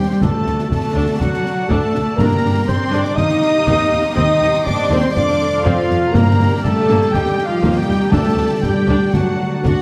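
A dark, roomy French horn section holds sustained chords through this swashbuckling, determined excerpt of a heroic adventure film score, moving at 121 BPM in a straight 4/4 through a D, G minor, E-flat and D suspended progression. A distant, intense violin section carries the lush melody, while a smoother studio violin section, an airy silver flute and a solo cor anglais add second lines, and a focused viola section, ringing fingerpicked harp, and rich bowed cellos and double basses fill out the harmony and bass. Concert snare, bass drum and bright clash cymbals sit dry in the background, and very quiet hard-mallet timpani sound from 0.2 to 2.9 seconds and again from 6.1 seconds, all within a wet scoring-stage reverb and a dark, warm mix.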